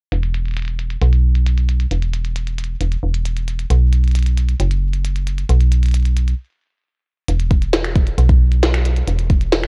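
IDM at 134 BPM in a straight 4/4, intricate and playful, cut from a longer piece and tuned slightly flat of standard pitch. A dark, metallic FM bass with a fast, decaying attack sits up front from 0.1 seconds, low in its register, beside a glitchy electronic kit of finger snaps, clicky low-passed hi-hats and a tiny filtered snare. After a stop from 6.4 to 7.3 seconds, a deep, up-front electronic kick joins at 7.5 seconds, while the whole recording is dry and coloured by worn cassette tape with a warbly pitch drift.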